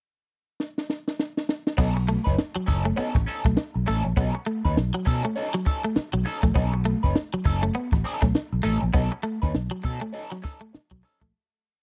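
Strutting and funky, this short funk piece opens with a compact cocktail drum kit playing a fill from 0.6 seconds, with dark cymbals, a high-tuned snare and a punchy kick, before the full band drops onto a B9 groove at 1.8 seconds. A growly, amped fretless bass plays a syncopated riff anchored on the downbeat with muted ghost notes and chromatic approach notes, while a bright, twangy clean guitar picks a compressed, muted single-note line bathed in spring reverb, and a slightly broken-up second guitar scratches sixteenth-note rhythm through a wah. The dry, close 1970s-style studio sound keeps the drums and bass up front until the fade-out begins at 8.9 seconds.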